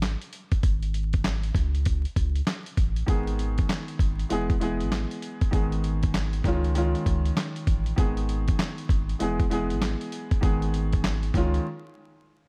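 Vinyl crackle hangs over this boom-bap hip-hop excerpt in G# minor, moving at 98 BPM with a swung 16th-note feel and a tough, reflective mood. A gritty, compressed, sampler-style drum kit sits up front from the start, its thumpy kick and medium-tuned snare joined by hi-hat and handclaps over a deep, round sine sub bass. At 3.1 seconds an intimate, woody upright piano enters over the G#m, E and C#add9 changes, its short-sustained tones audible with action noise and colored by cassette tape and filtering.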